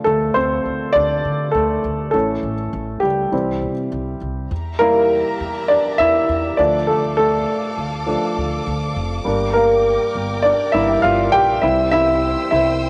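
In a straight, steady four, this earnest, driving piano pop fragment sets an intimate baby grand up front, with its audible action noise and short sustain colored by cassette tape, carrying a solo over a woody pizzicato upright bass, before a distant, lush bowed string section with vibrato and portamento, also tape-tinged, joins with sustained chords at 4.5 seconds, all inside a moderate hall reverb on a homespun cassette recording.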